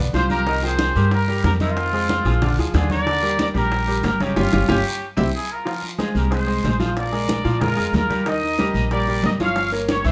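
A punchy, tight trumpet section leads this passionate, driving salsa cut at 185 BPM, with a woody, thumpy upright bass up front, a brilliant concert grand piano comping over Cm7, Fm7, Bb7 and Ebmaj7 changes, thick-skinned congas and round, low-tuned bongos in the background, a raspy guiro, a band accent from 4.4 to 5.7 seconds, and moderate studio reverb.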